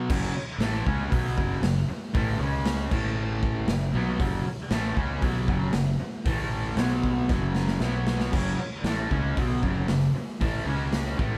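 Raw and swaggering, this short cut from a longer garage rock piece moves at 116 BPM in a straight 4/4, played by a small band live in one room with light reverb. A bright, double-tracked fuzz guitar drives the riff up front, its picked, compressed distortion ranging from F#2 to C#4 over power-chord changes among F#5, C#5, A5 and B5. Beneath it, a growling fingered electric bass adds punchy, overdriven weight with tube saturation, sitting between F#1 and C#2. The raw garage drum kit is punchy and gritty, with a medium-tuned snare, kick, hi-hat and crash captured in a bright, pumping stone room, saturated and warm with a rolled-off top and sitting up front. A drum fill from 7.3 to 8.3 seconds kicks the band into a new section at 8.3 seconds that carries on until the cut ends at 11.4 seconds.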